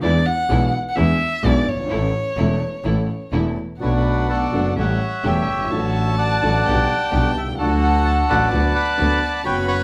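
A reedy, band-limited bandoneon carries the melody from 3.8 seconds in this tense, sultry tango excerpt at 128 BPM in 4/4, played with a rubato feel in a moderate, large studio reverb, after a violin solo opens the cut over grand piano accompaniment with audible action noise, a biting bowed double bass and a dark, woody sul tasto string section stabbing in the background, as chords move from E7 and A into B minor.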